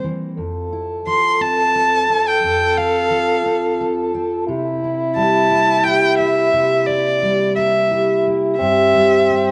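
In a straight 3/4 at 88 BPM in F major, this short excerpt from an acoustic folk-pop ballad feels nostalgic and hopeful, with a fingerpicked steel-string jumbo guitar giving full-bodied, shadowy accompaniment up front under chords moving from Fmaj7 at 0.4 seconds to C7 and on to Gsus4 at 8.6 seconds. A single bowed violin carries the dark melody close to the listener, singing expressively with vibrato, portamento and a smooth top. Entering at 0.4 seconds, a solo French horn adds a mellow, classical-style second line with light vibrato, sounding distant and roomy within a moderate echo-chamber reverb.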